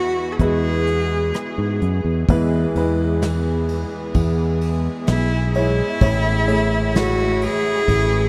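Acoustic folk-pop ballad at a slow 64 BPM in a straight 4/4, tender and nostalgic in mood, cut from a longer piece. A rich, bowed solo cello carries the melody up front, its smooth, even tone colored by vibrato and a diffuse ambient delay. A clear, intimate grand piano accompanies from the start with audible action noise, a boxy character and an analog chorus, while a fretless electric bass enters at 0.4 seconds, sitting direct and up front alongside a soft brush drum kit whose dark, rolled-off sound blends hi-hat, tight kick, ride, rim click and a medium-tuned snare. At 2.3 seconds a distant chamber string section joins with pure, floating sustained chords and a gentle attack. The harmony rests on E before shifting to Amaj7 at 6.0 seconds, and the whole mix is dreamy and soaked in a huge ambient reverb.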